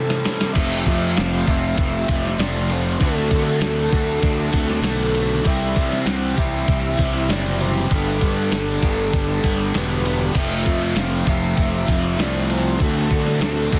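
Wistful and blissful, this short cut of shoegaze-leaning dream pop rock moves in a straight 4/4. A breathy, flute-like synth lead carries the melody over the whole passage, its soft, sustained tone shimmering with chorus, vibrato and tape echo. Behind it, three overdriven guitars stack their riffs into a dense wall: a crunchy one bathed in reverse reverb, a dark, compressed one colored by phaser, and a bright, double-tracked one wrapped in lush chorus, while a very quiet, slightly broken-up guitar through a small old amp picks arpeggios underneath. A crisp 8-bit drum machine opens with a short fill, then sits up front with a thumpy kick and fat snare, and from 0.6 seconds a growly, punchy fuzz bass and a distant, jingly tambourine join in. Chords drift through Fadd9, D5, C6 and G, and the mix is dry, dense and heavily limited, giving the haze a close, pressing weight.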